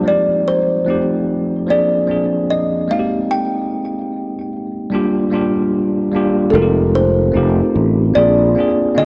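A bell-like tine electric piano opens this nostalgic, melancholic lo-fi hip hop excerpt at a swung 74 BPM in F dorian, its clean chords low-pass filtered and run through cassette tape across Fm9, F7, Bb7 and Abmaj7, while a woody, ringing kalimba carries the melody and a growly, up-front fretless electric bass with tube saturation sustains from 6.5 to 8.5 seconds, the whole mix bathed in a moderate plate reverb and worn, warbling old tape with drifting pitch.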